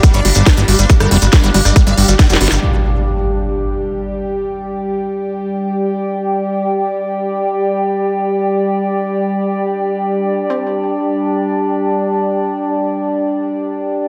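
Dense and heavily limited, this psychedelic trance excerpt sits in a moderate plate reverb with digital ambience, and its mood is intense and hypnotic. It opens on a drop in which a tight, up-front electronic kick and a fat, saturated analog bass drive beneath a garage kit of cracking snare, crisp hats, rim click and crash, filtered and tape-toned, with grainy maracas tucked in the background. Around them, a swarming, aggressive rave lead with chorus, phaser and tape echo and a squelchy acid bass riff through phaser and digital delay pump to the sidechain. A drum fill and a band accent close that opening burst, and at 2.6 seconds an electronic impact lands as the beat drops away. From there an up-front drone with moving overtones holds sustained chords to the end beside a lo-fi, warbling tape-like pad, pierced once near 10.5 seconds by a juicy, resonant blip pluck.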